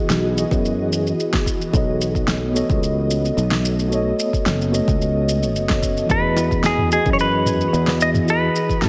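Smooth and blissful, this sunset chillout excerpt opens on a mellow tine electric piano with tape echo and an ethereal, airy pad shimmering with chorus and phaser in the background, over a growly fretless bass, a deep house kit with a fat snare, shaker and toms, and a deep, overdriven electronic kick. At 6.1 seconds a clean, compressed semi-hollow guitar steps up front with the melody through digital delay, joined briefly by very quiet, low-tuned bongos, all set in a lush hall reverb.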